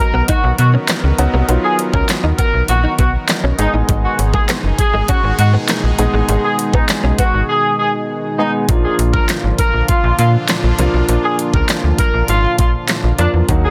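This bittersweet, driving dance-pop fragment opens at once on a punchy, vintage-style horn section carrying the melody with light vibrato and tape echo, over a polished baby grand piano with long sustain and a bright, detuned sawtooth pad that evolves through a filter swell and shimmers with chorus. All three of these parts pulse with sidechain pumping, as does a snappy FM bass with a metallic, digital attack that sits up front in the mix. An electronic, layered pop kit of knocking kick, fat snare, bright hi-hat and handclaps propels the groove, while a clean, direct-recorded electric guitar plays a picked riff in the background with ensemble chorus until it stops at 7.3 seconds. The harmony moves from B to Abm, and after a silent gap from 7.5 to 8.7 seconds the drop returns on Bb. Light reverb surrounds the parts, and the master is dense and heavily limited in a modern style.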